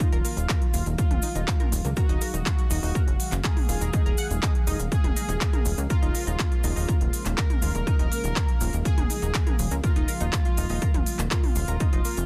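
A dense, heavily limited mix with little reverb carries this dark, cinematic melodic techno passage, cut from a longer piece, as the chords shift from Ebmadd9 to Db6/Eb at 4.9 seconds. A heavy, tape-toned electronic kick sits up front with a layered techno kit of handclaps, smooth hi-hats and toms, a grainy, bright cabasa in the background, and a punchy, funky analog bass with a detuned sawtooth and ring-modulated bite and tube saturation. Over them, a bold, fat analog synth brass with vibrato and digital delay plays the melody, while an evolving, resonant pad and a tight, driving sequenced arpeggio with dub echo pump behind it.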